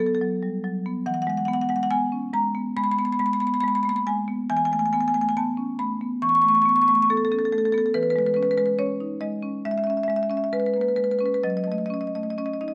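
Dark production and a moderate stone-room reverb surround a woody, mid-forward marimba struck with medium hard mallets, sitting up front as the only instrument across this brief 12.7-second fragment of a longer piece. The contemporary classical solo moves at a rubato 70 BPM in 4/4, spanning E3 to C#6 with a hypnotic, reflective mood. Its harmony drifts from a rootless D6 through Eadd9 and Bsus2/E, reaching E6 at 8.0 seconds and closing on F#m6 at 11.4 seconds.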